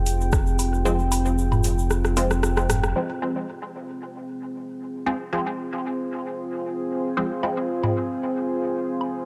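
Nocturnal and cavernous, this swung dub techno fragment, cut from a longer piece, rests on a deep, moody ambient pad of detuned sawtooth and sub-octave tones that sustains throughout, softened by chorus and its own reverb and breathing under sidechain pumping. A round analog bass with tube saturation sits up front beside an electronic deep house kit of metallic, overdriven hi-hats and rim clicks soaked in cassette tape grit and dub echo, while a grainy, compressed egg shaker sits low in the mix. Tape-warm electronic woodblock and toms pump and echo through the opening, and a drum fill begins at 1.9 seconds before a band accent. The bass, kit and shaker drop out at 2.9 seconds, leaving the pad and a muted, wave-folded chord stab with a snappy filter pluck, phaser and dub echo to carry the second section. The woodblock and toms return at 7.4 seconds, all framed by light digital ambience and the hazy character of a home cassette recording.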